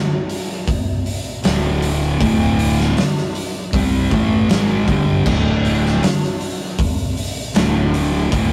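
A sludgy, hypnotic stoner and doom metal fragment opens with an oversized, low-tuned acoustic drum kit, up front with boomy kick, fat snare, dark cymbals and gritty saturation, before two thick, distorted fuzz guitars, one sitting in the background, and a growly overdriven fingered bass enter at 1.4 seconds on a heavy D5 riff, all caught in a rough rehearsal-room recording with a small room's moderate reverb.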